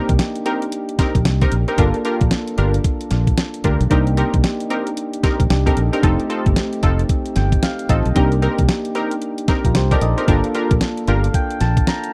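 A soft, mellow electric-piano-like synth and a punchy polysynth comp open this punchy, bouncy new jack swing excerpt at 113 BPM in C dorian, with a swung sixteenth-note feel in 4/4. A clean 12-bit drum machine arrives almost at once, its thumpy kick and fat snare sitting up front alongside the hi-hat. A fingered electric bass, dark and round, sits equally forward in the mix. The keys carry gentle, decaying chorused chords over a Cm7, Gm7 and F7 progression, adding short fills around 7.1 and 10.8 seconds. The sawtooth-edged comp stabs with a detuned, wave-folded bite, ring modulation, a filter sweep and tape echo. The dry, close sound recalls a 1970s-style studio, and the fragment is cut from a longer piece.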